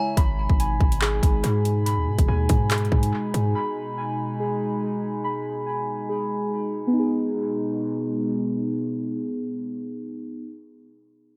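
A hollow, flute-like pad and muted, warbling synth keys playing arpeggios through chorus, low-pass filtering and dub echo open this cold, menacing half-time drill excerpt, joined at 0.2 seconds by a punchy 808-style bass and an up-front drum kit of hard-clipped kick, metallic hi-hats and handclaps that drop out around 3.5 seconds, leaving the airy pad and dark keys to carry the echo-heavy mix through a filter sweep into a new section at 6.9 seconds.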